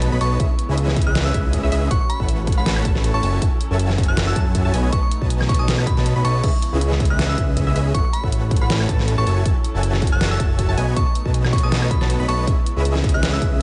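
The sound is dry, with little reverb and a dulled top end, in this dreamy, emotional future bass passage cut from a longer track. A fat, saturated analog bass and a punchy electronic kick, which enters at 0.4 s, sit up front, while a dubstep drum kit with a deep snare, crash, hi-hat and woodblock drives a swung half-time feel. Above them a huge, detuned supersaw plays a compressed riff with vibrato, and a glassy FM bell carries the melody through a chorus effect; the bass, supersaw and bell breathe with sidechain pumping. Further back, a mellow unison pluck runs arpeggios through a digital delay and pumps as well, and a very quiet studio string section holds smooth bowed chords. The harmony cycles through C#m7, A6, F#m7 and B7 twice before landing back on C#m7.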